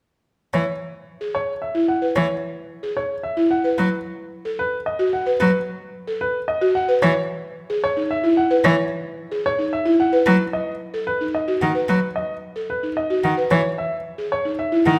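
Propulsive and bright, this short cut from a longer minimalist classical piece moves at 111 BPM in a straight 3/4, with its tuning set to A4 = 443 Hz. A clear baby grand piano carries the melody from 0.5 seconds, sitting up front with an intimate presence, short sustain and audible action noise. Alongside it, a single bowed cello holds a focused, close accompaniment, its tone colored by vibrato. From 1.2 seconds a marimba played with soft mallets spins arpeggios on hardwood bars, its woody, round and airy sound carrying a distinctive buzz while staying dry. The harmony rests on E, moving through B7 shapes and Emaj7, and a moderate recital hall reverb with a 1.7-second decay gives the ensemble a natural sense of space.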